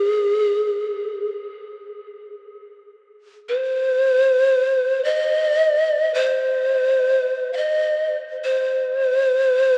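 Heard through worn, warbling cassette tape with a drifting pitch and a long cathedral reverb, this calm, spacious meditative world piece in free time, tuned to A4 = 436 Hz and cut from a longer work, features a breathy bamboo pan flute alone and up front from 0.0 to 9.8 seconds, ranging from Ab4 to F5 with a crisp, chiffy attack, expressive vibrato and a diffuse ambient delay.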